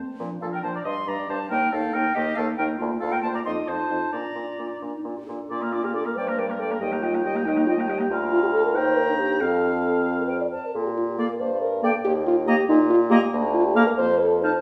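A dark, smooth-topped French horn opens this graceful, cheerful classical-period movement for wind quintet in a lilting 6/8 with a flexible rubato feel, joined within a moment by a mellow clarinet, a warm bassoon carrying the bass, an oboe's second line and an airy, bright concert flute singing the melody high above. The flute sounds close and expressive, with a soft attack and vibrato, while the oboe, clarinet and bassoon sit distant and roomy inside a scoring-stage reverb and small-room ambience. The music moves into a second section at 5.5 s before the passage breaks off mid-piece at 14.6 s.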